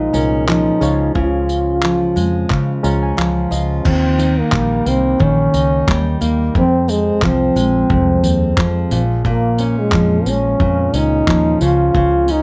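Acoustic pop at 89 BPM with a light sixteenth-note swing, wistful and reflective, in this excerpt cut from a longer piece: a bucket-muted trombone carries the melody up front with a veiled, breathy tone and vibrato, over a fingerpicked steel-string acoustic guitar whose full-bodied sound carries some finger squeak. A dark, foam-muted electric bass and a gritty, compressed sampler-style soul kit with a thumpy kick, handclaps, tambourine and crash cymbal hold the groove through chords moving from Bbm7 and Db to Eb and Fm. A barky, lightly overdriven reed electric piano adds bright color only in the opening seconds, playing a fill from 2.5 to 3.9 s before dropping out, all set in light reverb.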